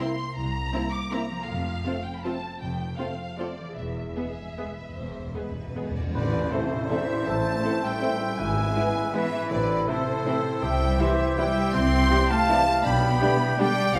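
In 3/4 with a free, rubato sway, this bittersweet, sweeping orchestral ballroom waltz is heard as a cut from a longer piece. Two violin sections carry the tune from the start: one lush and expressive with a smooth top on the melody, the other bright, focused and close on a second line. Violas fill in the background, horns hold warm sustained chords, and a mellow concert harp rings out arpeggios, while woody, distant double basses and rich, close cellos anchor the low end from just after the opening. At 3.8 seconds a timpani fill on medium mallets arrives with a very quiet cymbal swell and tam-tam, leading into a band accent at 6.1 seconds. From there an airy, very quiet flute, a roomy oboe and a clarinet add second lines, dark trumpets punch out tight stabs, and a mellow tuba thickens the bass, joined from 6.5 seconds by a close-miked bassoon and very quiet trombones on accompaniment and chords. 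A generous scoring-stage reverb lends the whole orchestra a spacious, wet glow.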